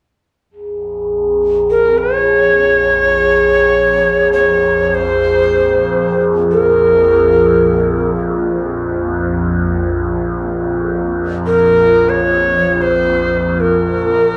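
A breathy, bright cedar flute with vibrato, a soft attack and chiff sits close and up front from 1.7 s, its slapback echo trailing the haunting melody over an ethereal, glassy glass harmonica from 0.5 s and a resonant drone with moving overtones, chorus and phaser from 0.9 s, all in free-time Bb minor meditative world music with a dark production and a small, wet room.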